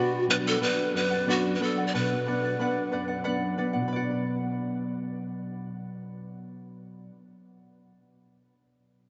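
Festive yet melancholic, this short Andean folk passage, cut from a longer piece, moves at a slow 61 beats per minute in a straight 6/8 lilt centred on B minor pentatonic over a B minor chord. A breathy bamboo pan flute carries the melody up front, its crisp, chiffy attack and unsteady vibrato giving it a human, wavering quality before it falls silent at 3.3 seconds. Beneath it, a fingerpicked charango adds a bright, shimmering layer from its doubled strings, some of them octave-doubled, sitting further back in the mix. A small, dark nylon-string guitar, thumb-plucked and placed up front, supplies accompaniment spanning deep bass to high notes and continues with the charango until about 7.4 seconds. The whole passage is bathed in a wet cathedral reverb with a long 6.4-second tail, so the instruments ring out in a vast, echoing space, with the top end rolled off for a soft, distant glow.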